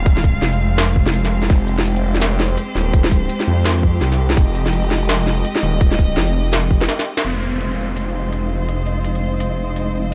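Heavy and spacious, this half-time drum and bass excerpt in F minor moves at 167 BPM with a swung feel, built on sustained chords from a smooth, bowed chamber string section that pumps under sidechain and sits behind a low-pass filter, while a thick, swirling detuned saw bass with phaser holds the low end up front. A tight, layered electronic kick and an industrial kit with a clanging snare, crisp filtered hats, crash and tambourine drive the groove until the kick stops at 6.8 seconds, and a drum fill leads into a band accent at 7.2 seconds. A downlifter enters there, and a grainy, flickering texture with its own reverb drifts in the background from 8.0 seconds, all within a fairly dry overall sound.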